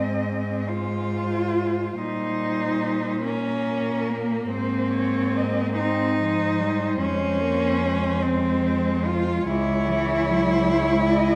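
Tender and lyrical, this short classical excerpt for a cello ensemble moves in a rubato 6/8 at 48 BPM in Ab major, with chords drifting from Ab through Eb7/Bb and Fm to C#m. A single warm, distant cello carries the melody with vibrato and expressive portamento, while an up-front second cello shapes a soft-attacked counterline with its own vibrato and portamento. Beneath them a smooth, even accompaniment cello sits in the background and a full-bodied bass cello sits up front, all four bowed throughout the 11.4 seconds inside the wet reverb of a recital hall.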